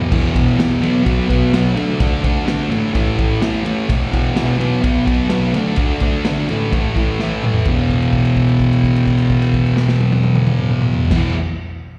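A straight 4/4 beat from a vintage drum kit, with punchy kick and smooth, dark cymbals, drives this swaggering, raw garage rock excerpt. Up front, a double-tracked fuzz guitar with slapback echo churns a thick riff through E5, B5, D5 and A5 until a drum fill at 7.2 s leads into a held note at 7.7 s, all captured like a live gig heard through the venue's PA with recital hall reverb.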